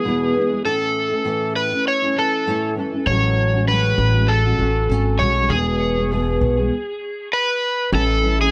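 Carefree and sunny, this acoustic pop excerpt moves at 99 BPM in 4/4 with a light swing on the sixteenths, set in A major and tuned slightly below standard pitch. An up-front, overdriven slide guitar carries the melody with a warm electric tone and a touch of tape echo, while a double-tracked, thumb-plucked nylon-string guitar supplies dark classical accompaniment beneath it. A woody, thumpy pizzicato upright bass joins at 3.1 seconds, sitting prominently in the low register. The harmony moves from E to A, through F#madd9/A and back to E, and the band hits a stop at 6.7 seconds before landing on A. There an ethereal, shimmering pad enters at 7.9 seconds, barely audible, as the clip is cut from a longer piece. A moderate studio reverb gives the mix a natural room feel, with a soft, rolled-off top end.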